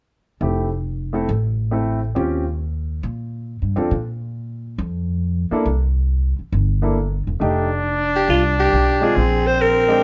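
Relaxed and sophisticated, this excerpt from a longer small-group jazz piece swings at 137 BPM in F major, with a warm concert grand piano and a woody pizzicato upright bass carrying the opening from 0.4 seconds through changes such as Fmaj9 and Eb13. At 7.4 seconds a mellow, breathy trumpet enters with light vibrato on a second line, and at 8.2 seconds a growling alto saxophone takes the melody, its raspy, gritty subtone and scooped notes set forward with plate reverb. The whole group sits in a moderate studio room, with the horns and rhythm section all up front.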